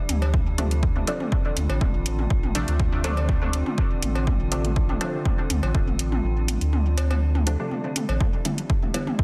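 A nocturnal, hypnotic dub techno excerpt at 122 BPM, where a punchy, dry kick and a round sine sub bass sit up front, the kick dropping out from 6.2 to 8.2 seconds while the bass ends at 8.2 seconds. A warbling, lo-fi pad holds sustained chords with chorus and pumping, joined by muted, detuned dub chord stabs with phaser and dub echo, moving from Dm7 to Em7 at 8.2 seconds. Overdriven metallic hi-hats, layered electronic toms and cowbell with dub echo, and an eerie FM drone in the background fill out a dense, heavily limited mix with light reverb.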